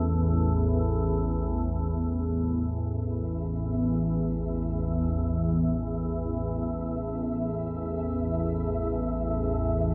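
Steeped in a lush hall reverb and the soft haze of cassette tape, this desolate, dark ambient drone in free time, cut from a longer piece, rests on a calm, up-front organ-like drone of detuned sine tones thickened by ensemble chorus and holding an A5 chord from 0.0 s, while a grainy, flickering granular texture of detuned triangle tones enters in the background with a slow attack at 2.8 s and sustains until 9.9 s.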